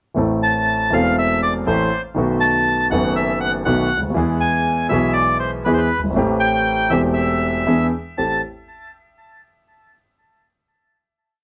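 A polished concert grand piano with a deep bass opens this passionate, sultry tango in A minor at 120 BPM, playing the tango rhythm of uneven groups of three and two eighths under a flexible rubato feel, before a reedy, up-front bandoneon enters at 0.4 s with a motif-based melody in period phrases over chords moving from Am through B7 and E to Am7, all in a moderate club reverb and the warbling pitch drift of a worn old cassette tape until the piece settles on a final Am7 chord at 8.2 s.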